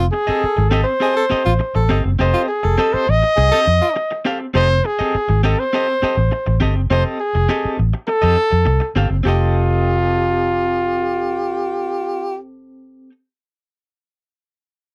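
Playful and gritty, this funk excerpt at 102 BPM in F mixolydian sets a mellow, scooped trumpet melody up front over a round, foam-muted vintage bass and a slightly broken-up electric guitar shimmering with tremolo on an F9 chord, while a breathy, whispered tenor saxophone adds a second line at 0.0 and again from 9.3 seconds, all captured in a dry, close 1970s-style studio sound.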